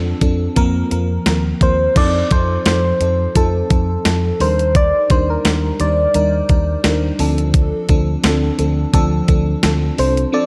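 This 1980s-style pop excerpt has a moody, urgent feel, moving in 4/4 with a light swing on the sixteenths. An FM electric piano layered with a soft pad carries the accompaniment from the start, its lush, dreamy, detuned tone treated with chorus and phaser, while a vintage muted fingered electric bass plays round, foam-muted low notes beneath it. A clean 12-bit digital drum machine enters at 0.2 seconds with a thumpy kick, medium-tuned snare, hi-hat and crash cymbal, its overdriven sound sitting up front. At 1.6 seconds a soft struck synth lead takes the melody, gentle and keys-like with a sub octave, vibrato, chorus and tape echo. The harmony moves through Dm7/F, Fsus4, F7, Ebmaj7 and Dm7, and the dark production is bathed in a moderate echo chamber reverb.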